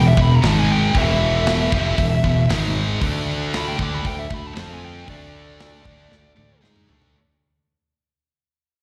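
This short cut from a longer heavy metal piece opens at once on a dark, distorted lead guitar solo, picked high over two high-gain rhythm guitars and a growly, fuzz-laden fingered bass, with a tight metal drum kit joining at 0.2 s. The mood is epic and heavy in a straight 4/4, moving through power chords from G#5 to E5, then D5 and F5. The lead carries a slapback echo and a digital delay. The front rhythm guitar is bright and scooped with its own slapback echo, while a second distorted guitar plays the riff very quietly behind it, and the overdriven bass sits up front. The kit has a medium-tuned snare and tight kick with hi-hat and toms, closing on a drum fill from 6.1 s to 7.1 s. It sounds like a live gig heard through the venue's PA in a recital hall, and the whole passage is fading out.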